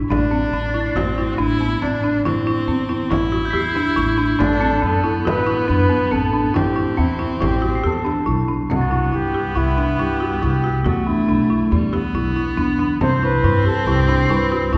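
A woody folk marimba played with hard mallets stands out in this hypnotic, restless piece of contemporary chamber music in 5/4, spinning dry, rustic arpeggios from the very start. Beneath it, a dark pizzicato upright bass with steel strings sits up front, while a single bowed viola with a focused, bright tone and vibrato carries a second line. A flugelhorn takes the melody from 4.4 seconds, classical in style, with vibrato and a distant, roomy quality. In the background, a glockenspiel struck with soft plastic mallets adds metallic, bell-like ringing, and a close, dry frame drum supplies the percussion. The harmony moves from D5/A to Am7, then shifts at 8.7 seconds to Cmaj7 and E7(no3), and the wet concert hall reverb places the listener further back in the room in this section cut from a longer piece.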